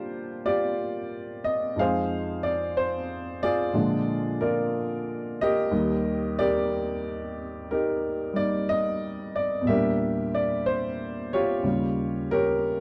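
An upright piano, woody and up front, plays alone in this relaxed, playful solo jazz fragment, cut from a longer piece and moving at a slow 61 BPM in 4/4 with a swung eighth-note feel in Bb major. Its line spans from low Eb2 to F5, moving through Bb6, Fm7, Bb7 and Ebmaj7 before Em7b5 at 9.7 seconds and Eb9 at 11.6 seconds. The sound is dry and close, with little reverb, in the manner of a 1970s studio recording.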